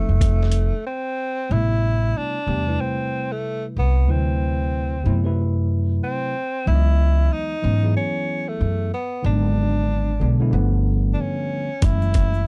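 A swung 93 BPM groove in 4/4, with 61% swing on the sixteenths, carries this smooth, cool jazz-hop fragment cut from a longer hip hop piece. The compressed, pitched-down boom bap kit, with its thumpy kick and medium-tuned snare, sits up front but is heard only in short bursts, from 0.2 to 0.7 seconds and again from 11.8 seconds. At 11.8 seconds a very quiet tube shaker and hard-handed congas join it from a live room. Throughout, a woody pizzicato upright bass holds the low end up front, while a worn, slightly out-of-tune tine electric piano plays clean, direct chords that move from F9 through Am7, D13, C#m11 and G#m7b5 to G9 and F#m7. Over this, a breathy tenor saxophone solo in subtone carries the melody with vibrato, scooped notes and a mellow, smooth top. The mix is dry with little reverb, and the gritty hardware sound has the character of cassette tape.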